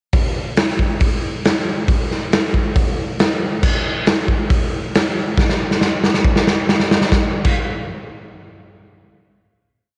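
A raw garage drum kit sits up front in this short, gritty rock piece, its punchy kick, medium-tuned snare, hi-hat and crash cymbal sounding saturated and dark, with a rolled-off top. At 137 BPM in a straight 4/4, the kit drives a big rock groove from 0.1 seconds, breaking into a fill at 5.4 seconds before a final hit at 7.1 seconds. Light reverb gives the drums the feel of a bright stone room.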